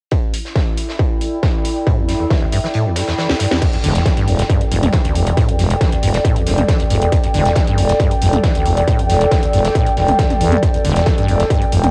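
Driving peak-time techno at 137 BPM in E minor, this hypnotic cut from a longer piece sits on a straight 4/4 pulse with a lo-fi, home-cassette character and light reverb. An up-front, distorted electronic kick anchors the groove, joined by a layered techno kit with a cracking snare, metallic hi-hats, crash cymbal and toms, while a huge arena kit adds a fat acoustic snare and hats in the background. A warbling, nostalgic tape-like pad of detuned sawtooth and triangle tones breathes under chorus, its own reverb and sidechain pumping, giving a dark, vintage haze. At 1.9 seconds a squelchy, resonant acid saw riff arrives with a filter sweep, subtle chorus and tape echo. The kick drops out at 2.7 seconds and a drum fill follows, then at 3.8 seconds a thick, growling FM bass enters up front with sidechain pumping to drive the rest of the passage.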